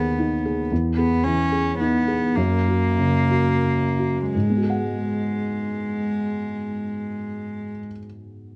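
Close, detailed microphones and light reverb frame this reflective, longing fragment of neoclassical piano and strings in G# minor. It moves in a rubato 3/4 between 82 and 114 BPM and slows through its first 4.3 seconds, as a felt-muted upright piano, mellow, dark and intimate with thick felt, carries the accompaniment up front. Beside it a single bowed cello, rich and pure, played sul tasto with a soft attack, floats a second line until 7.7 seconds, and the piano sounds on alone to 8.6 seconds.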